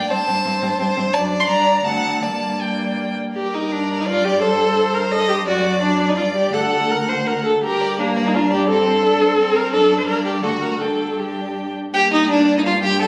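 Captured on a phone in a reverberant recital hall, with added club reverb and compression, this stormy, urgent passage from a quick classical-period string quartet movement in 3/4 surges with rubato as an up-front violin sings a rich, vibrato-laden melody above a second violin's smooth, even line, while a clear, focused viola, also up front, plays the accompaniment and a warm cello carries the bass with soft attacks and expressive portamento.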